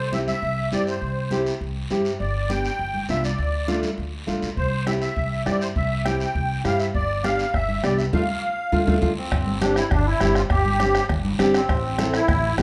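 Festive and sunny, this brisk cumbia excerpt in C major moves at 202 BPM, with a reedy, shimmering musette accordion carrying the melody up front over a full-bodied, fingerpicked nylon-string guitar whose finger squeaks come through, and a woody, growly pizzicato upright bass. Thick-skinned congas struck with hard hands sit in the background beside a raspy guiro, and a soft-beater bombo joins at 4.6 seconds, deepening the groove. The band hits an accent from 8.1 to 9.3 seconds before a new section opens on a suspended chord, all set in a moderate large-studio reverb.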